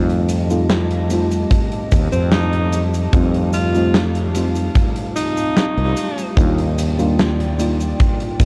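Vaporwave with a woozy, nostalgic mood, captured in a small room and carrying a cassette-tape character. A soft, round FM electric piano plays the accompaniment from the start, its dark tone bathed in lush chorus and tape echo, while a warbling, detuned pad with a slow attack sits in the background holding sustained chords through chorus and its own reverb. A growly fretless electric bass sits up front, and a huge arena kit of cabasa, hi-hat and medium-tuned snare rings out in a pumping hall, joined at 1.5 seconds by a punchy kick. A clear alto saxophone takes the solo melody from 2.1 to 6.3 seconds, forceful yet smooth on top, with vibrato, scooped notes and tape echo trailing its phrases. The harmony rests on F9 before moving to Ebmaj9 at 6.4 seconds, in a short cut from a longer piece.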